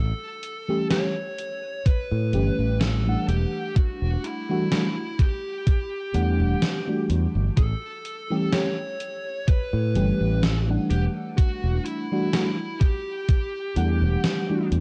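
A lightly swung 4/4 groove from a gated digital drum machine's hi-hat and snare, with 12-bit grit and gated reverb, is joined at 1.9 s by a thumpy, tape-warm electronic kick that sits up front and drops away at 13.5 s. This hazy, nostalgic vaporwave fragment, cut from a longer piece, sways between A7 and Em11, carried by a bright, punchy fingered electric bass with tube saturation and a lush, warbling FM electric piano with a soft pad layer and analog chorus. Above them, a dark, overdriven lead guitar picks a smooth melody through tape echo, all wrapped in a cassette-tinged digital ambience.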